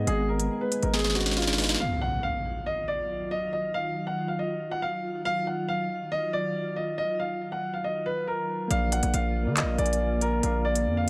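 Hip hop drill at 139 BPM with a half-time feel in Eb harmonic minor, this cold, ominous cut opens with an up-front concert grand piano carrying the melody over a mellow tine electric piano, a glassy, ethereal FM pad with chorus and its own reverb, a heavy, aggressive distorted 808-style bass, and a drill kit of sharp snare, crisp hi-hats and handclaps with gritty 12-bit sampler character, capped by a drum fill from 0.9 seconds. At 1.8 seconds an electronic impact hits as the drums, bass and electric piano fall away, leaving the open, deep-toned piano and the slow-blooming pad over an Ebmadd9 chord. The full band returns at 8.7 seconds on a Bb chord, all under a light reverb.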